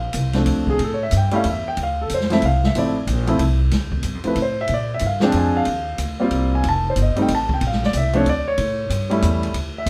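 Heard from a little further back in a modestly reverberant studio, this smoky, cool jazz piano trio fragment swings in three, cut from a longer piece. A polished, present concert grand with deep bass and short sustain takes a solo from start to finish over chords moving from Bbmaj7 through Dm7, Eb6 and F7. A woody, pizzicato upright bass sits up front, and an acoustic kit joins at 0.1 seconds with dark cymbals, a medium-tuned snare, hi-hat and a boomy kick.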